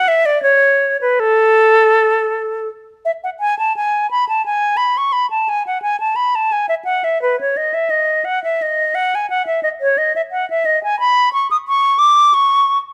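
A serene, radiant baroque-style classical fantasia for unaccompanied flute, cut from a longer piece, unfolds in a rubato 3/4 at around 87 BPM, beginning in A major and moving to E major at 3.4 seconds. The silver concert flute sits up front for the whole passage, its airy, metallic tone shaped by vibrato and soft attacks as it ranges from A4 to D#6. Light reverb and a dark, warm production surround the solo line.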